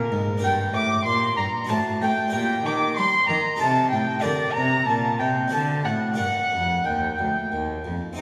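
A dark, nasal violin with a gut-string tone carries the melody from the first moment, joined by a clear oboe with light vibrato on a second line, a brilliant, full harpsichord in accompaniment and a warm, reedy cello on the bass, all playing throughout this brief 8.2-second cut from a longer baroque-style sonata movement in three-time. The mood is grave and introspective, with the bowed strings in period style sitting up front and the oboe sounding roomy. A long, wet concert-hall reverb surrounds the ensemble, and lossy compression artefacts colour the sound.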